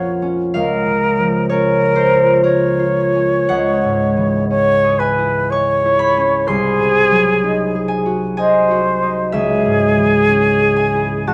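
Dark production with light reverb frames this elegiac, solemn excerpt of a romantic classical duo for flute and harp, moving in a slow, rubato 3/4 at about 61 BPM with uneven, breathing beats. The concert flute carries the melody in an airy, distant tone with tongued notes and expressive vibrato, while the concert harp accompanies with bright, fingerpicked notes that ring out across a broad range. Opening on B-flat minor harmony, the music settles into C# minor at 3.5 s and leans on a G#7 chord before returning home at 9.3 s.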